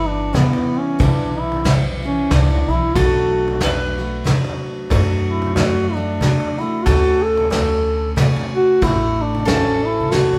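Reflective and melancholic, this acoustic folk passage moves at 92 BPM in a swung 3/4 in E dorian, with a mellow, softly attacked duduk carrying the melody up front throughout, its vibrato lending a plaintive folk voice. Beneath it, a bright, double-stringed mandolin plays a second line, a full-bodied jumbo steel-string guitar picks the accompaniment over Em7/G, Bm7 and Dmaj7, and a woody, thumpy pizzicato upright bass anchors the low end. A distant cajon with faint snares and a brushed drum kit with a punchy kick and rolled-off top keep time, the drums adding a fill at 10.0 seconds, all captured as a band playing live in one room with a lush, large studio reverb.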